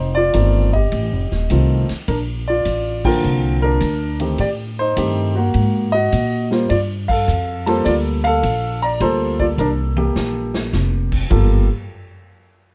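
A warm grand piano carries the melody up front with plate reverb in this cool, swinging jazz trio excerpt, over woody, thumpy pizzicato upright bass and a quieter big-room drum kit with a punchy kick, as the band hits accents at 2.9 and 7.0 seconds before a drum fill at 9.6 seconds.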